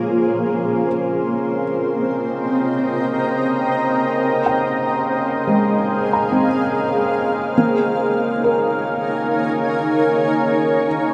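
Weightless and warm, this ambient fragment floats in free time and is cut from a longer piece. A bright, cloudy granular pad sits up front, holding blurred, detuned chords that evolve slowly under a filter sweep and carry their own built-in reverb. Alongside it, a felt-muted upright piano plays soft, dark arpeggios, its mellow, intimate tone trailed by tape echo. A close-miked pedal harmonium holds a reedy, breathing drone low in the mix, dry and full. The harmony moves from Bbm9 through Cm7 and Dbmaj9#11 before settling on Bbm7 at 7.5 seconds, all suspended in a vast, echoing cathedral reverb with a 6.4-second decay.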